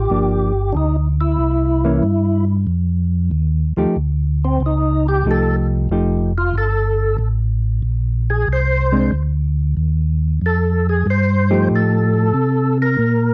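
A dry, close studio sound in a 1970s style frames this bluesy, greasy soul jazz organ trio excerpt, swinging in 4/4 at 93 BPM in F mixolydian. A fat, lightly overdriven tonewheel organ carries the melody with percussive second-harmonic attack, key click, chorus vibrato, slow rotary speaker and slapback echo, breaking into a solo at 2.7 seconds. Beneath it, a second, mellow tonewheel organ supplies a round, dark bass line through chorus vibrato and slow rotary, while a clean, fingered hollow-body electric guitar comps until 12.3 seconds.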